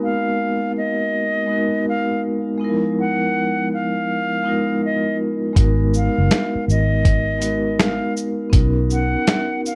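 Melancholic and reflective, this lo-fi hip hop excerpt at 81 BPM in G# dorian sets a breathy, close-miked concert flute melody over ringing vibraphone chords softened by cassette tape and a low-pass filter, both bathed in plate reverb, until a dark, foam-muted fingered electric bass and a gritty, thumpy sampler-style drum kit with snare, hi-hat, shaker and finger snaps enter at 5.6 seconds beneath a harmony that moves from G#m7 to Bmaj9.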